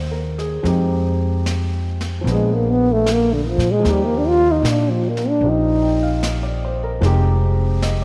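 A dark, breathy trombone with light vibrato carries the melody up front from 2.3 s to 6.3 s in this intimate, late-night jazz ballad at 75 BPM in Eb major, swinging over natural-sounding grand piano chords, a woody, growly pizzicato upright bass and an airy brushed drum kit that enters at 0.4 s, all set in a small room with light reverb.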